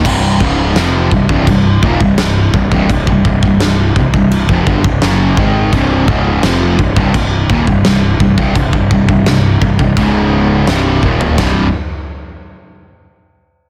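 A double-tracked, distorted electric guitar leads this heavy, aggressive metal excerpt, picking a bright, compressed riff between C2 and Ab3 in C phrygian at 85 BPM in a straight 4/4. Beneath it, a picked electric bass growls with fuzz and overdrive, its direct and amped tone sitting low in the register. A big acoustic rock drum kit sounds mid-forward and up front, with a tight kick, a fat snare carrying soft clipping, and china, crash and ride cymbals alongside toms, capped by a drum fill at 11.0 seconds. The harmony rests on C5, moves to Db5 at 10.0 seconds and passes through Cm before landing back on C5 as a new section begins at 11.4 seconds. Little reverb colours the sound, and the dense, heavily limited modern master makes this cut from a longer piece hit hard throughout.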